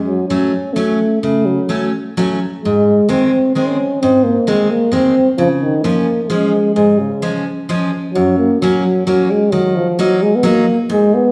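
Bouncy and festive, this alpine folk dance tune moves in a lilting three-beat metre with a straight feel, taken from a longer piece. A mellow euphonium carries the melody up front, its classical-style solo line smooth at the top and sitting a little louder than its partner. Alongside it, also up front, a picked steel-string acoustic guitar supplies the accompaniment, its bright, full-bodied dreadnought tone ringing with fresh strings. The harmony moves from Gbm through Ab to Db before shifting at 8.1 seconds into a new section built on F# and D#m. Both parts sit close in a church or concert hall, wrapped in a wet recital-hall reverb that lets each note bloom and linger.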